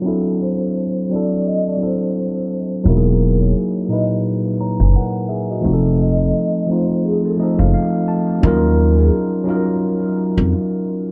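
A woody, thumpy upright bass with gut strings, plucked pizzicato and sitting up front, enters at 2.9 seconds and anchors this hazy, nostalgic lo-fi hip hop excerpt with a dark, acoustic low end. From the start, a clean, direct tine electric piano carries the accompaniment close to the listener, dressed in cassette tape colour, a low-pass filter and analog delay. A soft-mallet vibraphone sits further back with a smooth, ringing, metallic melody, its fast motor vibrato blurred by its own filter and delay. The swung groove moves through D9, Emaj9#11 and F7 under a filter sweep before shifting to Ebm9 as a new section begins at 8.4 seconds. The echo-heavy, cassette-toned mix is bathed in a moderate spring reverb, giving the whole piece a mellow, dusty glow.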